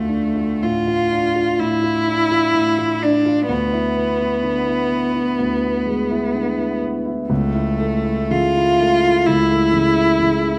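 A rich, smooth bowed cello with vibrato sings an even, melancholic melody up front, while a concert grand piano with deep bass and an open tone accompanies it through Dm, E7/D and A/C#, in this solemn romantic classical duo cut from a longer piece, played with rubato in 4/4 at 54-66 BPM, tuned to A4 = 441 Hz, and set in a wet recital hall reverb with an RT60 of 1.3 seconds.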